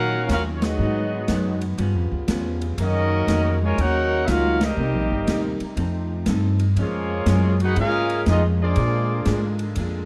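This is a brassy big band swing passage at 120 BPM in 4/4 with swung eighths. It opens with trumpets, trombones, guitar, saxophones and bass together: a clear, up-front trumpet section carries the melody with vintage vibrato, while a trombone section plays a second line further back. Underneath, a thumpy, woody upright bass sits up front with gut-string pizzicato, and a clean, compressed hollow-body electric guitar picks out the accompaniment in the background. A very quiet saxophone section holds soft-attacked, smooth chords with vibrato. The airy, hall-like drum kit comes in at 0.3 seconds with hi-hat, ride and a medium-tuned snare under dark, polished cymbals. The band hits accents at 0.5 and 4.5 seconds over a harmony that moves from Ebm9 through G7#11 and Gb6 to Cm7, F7 and Bb7. A moderate large-studio reverb surrounds the dark, warm production.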